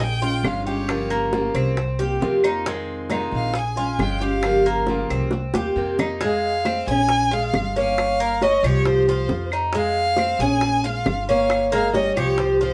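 Recorded by a band playing live in one room with a moderate studio ambience, this Cuban son and guajira piece has a warm, nostalgic feel. Up front, a bowed violin carries the melody with vibrato, portamento and a soft attack. A bright, metallic tres picks arpeggios on double strings, while a dark, thumpy pizzicato upright bass, round, low-tuned bongos played with soft hands and woody claves in the background keep the groove. A picked steel-string acoustic guitar accompanies until 6.2 seconds, following a drum fill from 5.3 seconds, when a small, fingerpicked nylon-string guitar takes up a second line.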